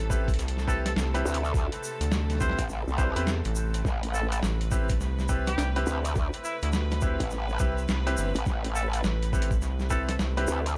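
A growling, wobbling growl bass with chorus and tube saturation sits up front from 1.3 seconds, joining a rubbery, hollow square bass that bounces alongside it from the start of this playful, funky glitch hop piece in swung 4/4 over a single Am7 chord. A gritty, tape-warm electronic kick gives a thumpy, pitched-down pulse, while a boom bap sampler-style kit adds hi-hat and a medium-tuned snare soaked in dub echo, and a grainy egg shaker ticks along quietly. A brilliant grand piano plays stabs with audible action noise, its long sustain pumping and trailing dub echo. In the background, a vintage, jazz-style trumpet carries the melody with vibrato and echo from 0.7 seconds, and a symphonic string section holds sustained, bowed chords with a smooth top and light vibrato, also pumping. The small room ambience and echo-heavy mix give this cut from a longer piece a close, echo-laden feel.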